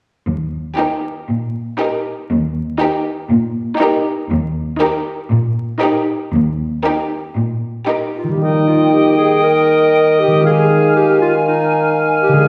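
A bowed cello section lays a rich, vibrato-laden bass at 0.3 s, joined at 0.8 s by lush violin sections carrying an expressive melody and a focused second line over smooth, even viola accompaniment; then, at 8.2 s, this playful, whimsical Eb-major film cue at 118 BPM shifts to a close-miked, soft-attack clarinet and ringing thumb-plucked concert harp arpeggios, joined at 8.4 s by a pure, distant flute section, a roomy cor anglais and a mellow bassoon, moving from Eb to Fm7/Eb inside a reverberant recital hall with a vinyl crackle.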